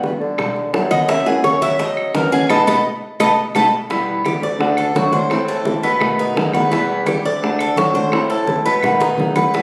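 A straight four-beat Cuban son and guajira groove with a sultry mood sets high-tuned bongos and woody claves (entering at 0.4 s) in the background, along with distant, damped, low-tuned congas, behind an up-front, thumb-plucked flamenco guitar with audible finger squeak, while a mellow, distant bassoon with light vibrato carries the bass and a bright, metallic Cuban tres arrives at 0.9 s with picked double-string arpeggios, taking a solo until 3.9 s, where a band accent and drum fill lead into the second section, the whole captured on a phone in a large studio with moderate reverb.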